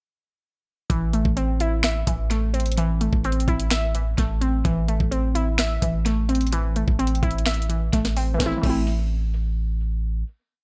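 A warbling, lo-fi pluck sits up front, its detuned vintage tone treated with chorus and phaser as it plays a rising arpeggio in eighths, repeated like a sampled loop over a steady A minor chord. This short hip hop and trap piece moves at 128 BPM in 4/4 with a half-time feel, and its mood is hard-hitting yet melancholic. Beneath the pluck, a deep, sine-toned 808-style bass holds long sub-bass notes that follow the kick, mellow and decaying. The electronic trap kit brings a knocking kick, a sharp snare layered with finger snaps, bright hi-hats with fast rolls, and a crash cymbal, all colored by tape echo until the drums drop out at 8.8 seconds. After the hook, a final chord rings to 10.6 seconds in an echo-heavy digital ambience.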